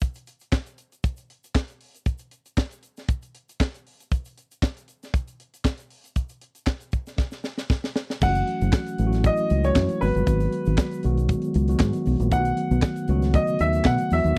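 A tight, up-front funk drum kit with a high-tuned snare, tight kick, handclaps, hi-hat and crash cymbal powers this driving, sultry 117 BPM disco excerpt alongside a very quiet, grainy egg shaker, until a drum fill at 7.2 s ushers in, at 8.2 s, a round, dark fingered electric bass, a mellow tine electric piano and an intimate, boxy grand piano with audible action noise and long sustain carrying the melody over F#m7, G#m7 and B7 chords in F# dorian, captured as a dry, close 1970s-style studio recording.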